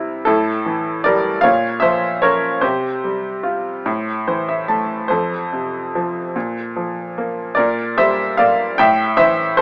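This short passage, cut from a longer piece, moves in a gently rubato 6/8 at 49 dotted-quarter beats per minute, giving it an unhurried, breathing pulse. It is a lyrical classical solo for upright piano, tender and peaceful in mood, played across a range from F2 to A5 for its full 9.6 seconds. The instrument sounds bright and woody, slightly detuned, with audible action noise that makes it feel intimate and up front. The harmony drifts through A5, Bbmadd9, Csus4, F, Bb5, Gm/Bb and settles on Am, with a brief piano fill between 3.9 and 5.1 seconds. Light reverb and a small-speaker character frame the sound, keeping it close.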